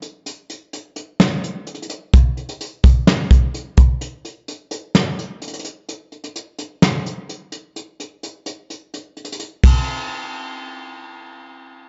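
A soft, up-front brush drum kit of hi-hat, ride cymbal, fat snare and tight kick carries this melancholic hip hop excerpt at 128 BPM in a half-time 4/4 feel, opening on a break from 0.0 to 2.1 seconds and playing until 9.7 seconds, its dark, smooth acoustic tone sitting in a small room with light reverb and a rolled-off top.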